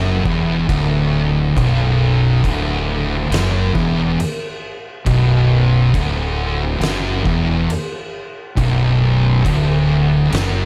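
A moderate large-studio reverb frames this sludgy, hypnotic stoner and doom metal passage at 68 BPM in B minor, where two dark, distorted fuzz guitars (one up front, one in the background) grind a low riff on a single Bm chord over a growly, overdriven fingered electric bass and an oversized low-tuned acoustic kit, entering at 0.3 seconds, with a punchy kick, fat snare, dark crash cymbal and a gritty, pumping stone-room sound.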